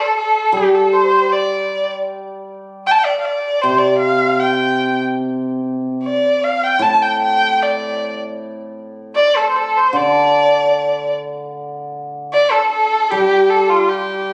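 Captured on a phone in a reverberant recital hall, this tender, graceful fragment of Chinese traditional chamber music flows in a rubato 2/4, with a warm, smooth solo erhu carrying the bowed melody up front with vibrato and portamento while a shimmering, ringing hammered dulcimer enters at 0.5 seconds with low accompaniment before the piece moves into a new section at 11.5 seconds.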